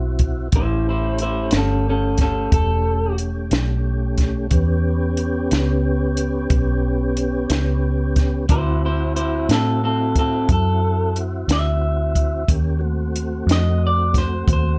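A dark, lightly reverberant production frames this soulful, gritty slow blues in 12/8 at 60 BPM in A mixolydian, where a slightly broken-up, lo-fi electric guitar through a small old amp carries a clean solo melody from 0.6 seconds over a foam-muted, round vintage electric bass, a compact cocktail drum kit with a high-tuned snare and tight kick, and a smooth tonewheel organ holding sustained chords through a slow rotary speaker and chorus vibrato with audible key click, moving from D9 to A9 and back to D9 before a D#dim7.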